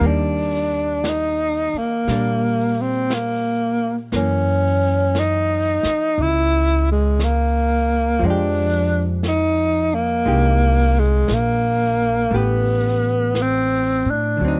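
A breathy tenor saxophone carries the melody up front with vibrato, a soft attack and scooped, whispered notes in this tender, intimate jazz ballad excerpt at 58 BPM in swung 4/4 and Eb major, backed by a woody pizzicato upright bass, a clean, picked hollow-body electric guitar accompanying in the background, and a dark vintage kit of brushed snare and hi-hat, all in a dry, close 1970s-style studio sound as the chords move from Ebmaj7 through Gb6 and Fm9 to Asus2.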